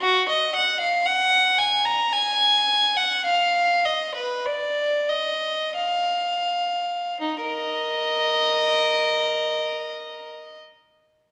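Introspective and solemn, this short excerpt from a baroque-style suite movement for unaccompanied violin unfolds in Eb minor and 3/4 at a rubato 40-58 BPM, the single bowed player's rich, reedy gut-string tone in period style sitting close and up front from Eb4 to Bb5, slowing through the opening section until 7.2 seconds before a new section begins, with the playing ending at 10.6 seconds as a recital hall's 1.6-second reverb lingers.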